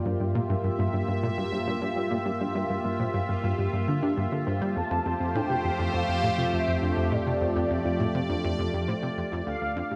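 Ambient, sequencer-driven space music at 102 BPM with a hypnotic, expansive mood, where a punchy, wave-folded analog bass riff with lush chorus and delay sits up front beside a bright, evolving resonant pad on Gm7, while a soft round pluck arpeggiates quietly, a warbling vintage drone and a bubbling, randomly stepped filter texture hum in the background, and an expressive portamento lead with vibrato enters at 4.8 s over Fadd9, all bathed in a lush hall reverb before a fade-out from 7.9 s.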